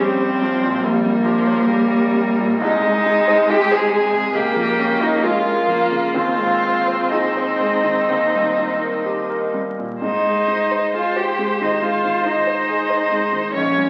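Classical chamber music, a slow romantic movement for piano quartet with a tender, unhurried rubato feel, heard in a brief passage cut from a longer piece. The cello carries a smooth, even second line up front, with the focused bowed viola close beside it. The violin's vibrato melody sits distant in the background, while a vintage grand piano supplies warm, smooth accompaniment. The harmony settles onto the home chord at 10.0 seconds, and everything is bathed in the reverb of a recital hall and the crackle of a very old 78 rpm record.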